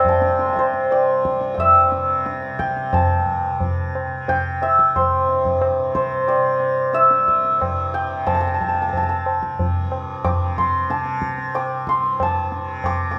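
A moderate recital-hall reverb surrounds this short passage of Hindustani classical music, cut from a longer performance, with a meditative, devotional mood and a pace that gradually speeds up throughout. The mellow, shimmering hammered santur carries the melody up front, over a buzzing, softly plucked tanpura drone and close, low-tuned tabla. The music moves into a new section at 2.9 s.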